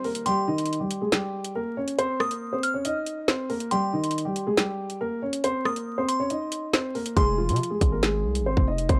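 A dark, boxy concert grand piano and an electronic drill kit with woody snare and metallic hats open this tense, ominous half-time drill cut at 139 BPM in C phrygian, joined at 0.3 seconds by a delicate, tinkling FM tine bell high above, its vintage warble thickened by chorus and analog delay. The kick sits out over the Cm7 until 7.2 seconds, when the harmony moves to Fm7 and a heavy, saturated 808-style bass with a noise layer hits up front alongside the hard-clipped kick. The dry, gritty hardware sound carries a layer of vinyl crackle.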